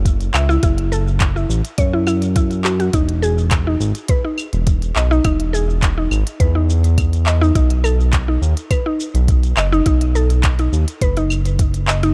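An up-front, mellow sawtooth-and-square synth bass with vibrato and sidechain pumping anchors this mystical, meditative organic downtempo excerpt at 104 BPM, joined from 0.1 s by a soft electronic kick and a crisp organic electronic kit of claves, handclaps, hi-hat and shaker in studio reverb, while a woody, round FM mallet-like pluck plays detuned arpeggios through chorus, cassette tape and digital delay over F#m7, Emaj7 and B7 in a dark, warm digital ambience.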